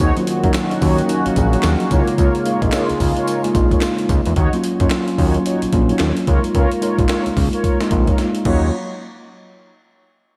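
A dreamy mix soaked in lush hall reverb frames this confident, slick new jack swing cut in Eb minor at 110 BPM, swung on the sixteenths and moving between Ebm7 and Db6. A gritty, compressed sampler-style breakbeat kit with a thumpy kick, high-tuned snare, handclaps, tambourine, hi-hat and crash sits up front over a fat, detuned analog bass. A mellow tine electric piano supplies the accompaniment, and dark, brassy synth stabs carry chorus and a diffuse delay, while a bright, evolving pad sustains chords until 4.3 seconds. A drum fill at 8.2 seconds leads into a change of section at 8.7 seconds, where the parts stop.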